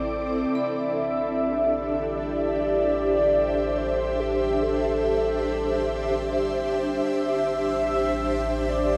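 Ambient in free time and A minor, serene and melancholic, this brief excerpt opens on an ethereal pad of slow-attack sustained chords, thick with ensemble chorus, tremolo and shimmer reverb, over a round sine sub bass that fades in from 0.5 seconds, while a breathy wind-like noise texture lingers only for the first half second. A velvety, detuned synth lead carries the melody from 0.5 seconds, its vibrato wrapped in chorus, tape echo and shimmer, as a very quiet, metallic vibraphone struck with hard mallets rings out arpeggios in a boxy small room from 0.6 until 7.1 seconds. From 0.5 seconds the harmony rests on Am7, and everything sits in a lush hall reverb with a 2.6-second decay.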